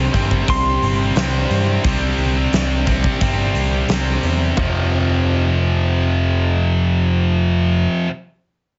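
A straight 4/4 pulse at 88 BPM drives this energetic, anthemic hard rock excerpt, cut from a longer piece, built on a C5 chord that moves to F5 at 4.6 seconds. A huge arena drum kit of hi-hat, punchy kick, medium-tuned snare and toms sounds in a pumping hall room from 0.1 to 4.7 seconds. Two picked electric guitars carry the riff together across the whole stretch: a cranked stack guitar, bright, overdriven and up front, beside a heavy high-gain guitar with a distorted edge. Underneath, an overdriven picked electric bass, dark, round and punchy, holds the low end up front until 7.9 seconds. A lightly driven lead guitar, warm, slightly broken-up and compressed with analog delay, plays a melody reaching C6 over the first 2.5 seconds as part of a solo. Light reverb surrounds a heavily compressed, radio-like sound with its top end rolled off.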